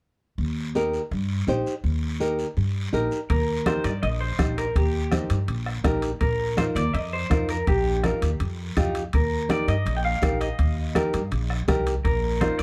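A warm, moderately reverberant studio sound carries this sunny, festive cumbia, where a woody pizzicato upright bass up front and a raspy, vintage guiro begin at 0.4 s, a dark, fingerpicked flamenco guitar joins at 0.8 s, and from 3.3 s a twangy, clean electric guitar with spring reverb takes the melody over a soft-beatered bombo, bright, hard-hand congas in the background and ringing metal-shell timbales.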